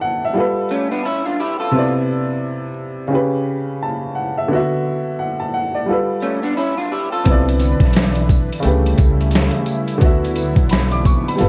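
Cosy and mellow, this lo-fi hip hop excerpt moves at 87 BPM in 4/4 with a swung sixteenth feel, centred in D major. A clear, woody upright piano carries the accompaniment throughout, up front and softened by cassette tape character and a low-pass filter, moving through rich chords such as G9, Cmaj9 and D69. A dark, slightly broken-up electric guitar through a small old amp adds brief second-line phrases, coloured by analog chorus and tape echo. At 7.3 seconds the texture fills out: a lush, warbling unison pad with a slow attack holds sustained chords, a pizzicato upright bass brings a dark, thumpy low end, and a gritty boom bap sampler-style kit arrives with thumpy kick, medium-tuned snare and hi-hat, carrying vintage 12-bit crunch and a large-room sheen. A jingly tambourine enters quietly but close from 7.6 seconds, while vinyl crackle and small room ambience wrap the whole piece in a homely, worn patina.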